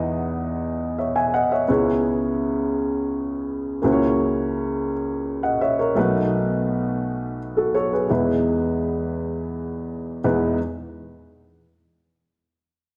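Uplifting and reverent, this short gospel passage moves at a slow 56 beats per minute in a steady, straight 6/8. A solo upright piano carries it from 0.0 to 10.6 seconds, its dark, woody tone sitting up front and spanning from the deep bass to the upper middle register. The harmony in E major settles on Emaj7, then passes through C#m7, F#7/C# and B7 before returning home to Emaj7 at 8.1 seconds. A lush recital hall reverb surrounds the instrument and lingers into the closing section after the piano stops. Cut from a longer piece, it has a vintage, prayerful character.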